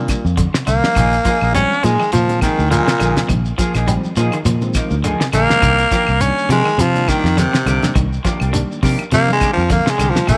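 A swung sixteenth-note groove at 103 BPM in 4/4 drives this joyful afrobeat cut, taken from a longer piece, with a damped 70s drum kit laying down a fat snare, tight kick and hi-hat from 0.1 seconds. A round, foam-muted fingered electric bass sits beneath it, while claves, a grainy shekere and very quiet, soft-handed congas add woody and skin textures in the background. Up front, a raspy, gritty baritone saxophone carries the melody as a punchy, close-miked solo with vibrato, spanning Bb2 to Db4. Behind it, a reedy, worn electric piano with fast tremolo plays accompaniment through its built-in speakers, slightly out of tune. A twangy guitar at the edge of break-up picks arpeggios through spring reverb from 0.4 seconds, and a dark, clean guitar with lush chorus adds stabs from 1.0 seconds, all over chords moving from Cm9 to Bb7sus4 and back to Cm9.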